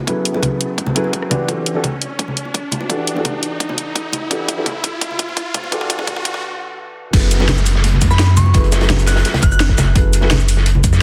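Melancholic and rolling, this liquid drum and bass clip opens with a build-up of an electronic riser and downlifter, a filter sweep and a drum fill over a soft, felt-muted upright piano with tape echo, a punchy overdriven electronic kick, a cracking-snare drum kit with hi-hat, rim click, shaker and crash, and ringing hard-hand bongos and congas. After a brief break, the drop lands at 7.1 seconds, bringing in a deep, up-front sine sub bass with octave and a gritty, saturated breakbeat kit with a rolled-off top. A crystalline FM bell with chorus and tape echo glints in the background from 8.1 seconds, all sealed in a dense, heavily limited modern master with light reverb.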